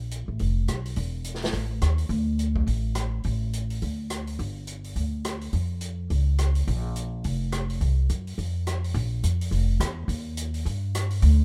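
Swinging and joyful, this short cut from a big band swing piece rides a brisk swung pulse carried by just upright bass and drums. The pizzicato upright bass sits up front with a woody, thumpy tone on steel strings, running low through the whole passage, while the drum kit sounds distant and roomy, its hi-hat, rim click, medium-tuned snare and boomy kick softened by a rolled-off top. The drums sit well beneath the bass in level, and the pair carry on together until the passage moves into a new section at 9.0 seconds and stops at 11.4 seconds.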